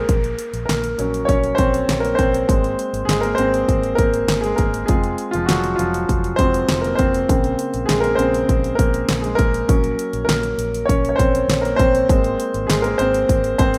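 A rough home-demo mix with light reverb carries this earnest, bittersweet piano-driven pop excerpt at 100 BPM in 4/4, where a clear, natural grand piano sits up front and carries the solo over Gb/Bb, Abadd9, Fm and Bbmadd9 chords, backed by a dark, round, foam-muted vintage electric bass, a punchy, layered electronic pop kit with a fat snare, warm hi-hats, handclaps and a small-room character, and a very quiet downlifter that runs until 2.5 seconds.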